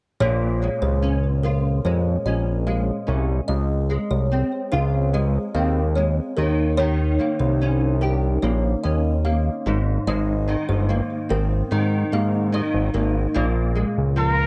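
A hazy, dreamy indie pop excerpt at 73 BPM opens at 0.2 seconds with a fat, saturated sawtooth bass up front, a fingerpicked nylon-string guitar with audible finger squeak, ensemble chorus and a warbly pitch drift, and a woody, ringing kalimba second line treated with analog chorus and tape echo, moving through Bbm7, Dbmaj7, Eb7 and Abadd9. The kalimba drops out at 13.1 seconds, and as the progression returns to Bbm7 a clear, punchy trumpet with light vibrato and analog chorus sounds a single Bb4 at 14.2 seconds. The production is dark and warm, with light reverb.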